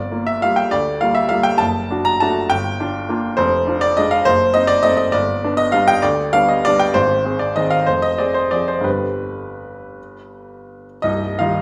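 A present, up-front baby grand piano plays a nostalgic, bittersweet classical waltz alone in a rubato 3/4, spanning from the deep bass to the upper middle register through shadowed chords such as Gm7, F#dim7 and Fm before settling on Cm at 11.0 seconds, all bathed in a lush recital-hall reverb in this short section cut from a longer piece.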